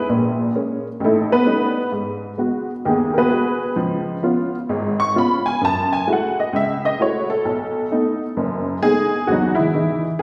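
A detuned, jangly honky-tonk upright piano plays alone and up front for the whole 10.2 seconds, its woody, vintage tone and short sustain giving this brief solo jazz excerpt a relaxed, warm mood. At 130 BPM in 4/4 with a swung eighth-note feel in E major, it moves through a chord progression from A#m7 through G#m7, C#7, F#m9 and B7 before landing on Emaj7 at 9.3 seconds. A wet recital-hall reverb surrounds the piano, giving it the spacious ring of a church or concert hall.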